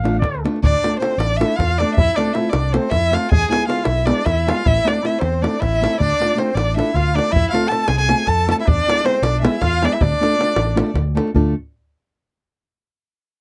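A fiery, restless Balkan wedding-band tune in straight 7/8 at 314 BPM (counted in eighths), cut from a longer piece in D dorian sharp4, with chords moving through Dm, F, E and Am. A tight davul and an amped, up-front fingered electric bass drive it along with a small, fingerpicked nylon-string guitar full of finger squeak, while from 0.6 s a single boxy, bowed violin carries the melody up front with expressive vibrato and portamento. A distant, roomy solo trumpet in classical style adds a second line with light vibrato, all in a dark, dry production.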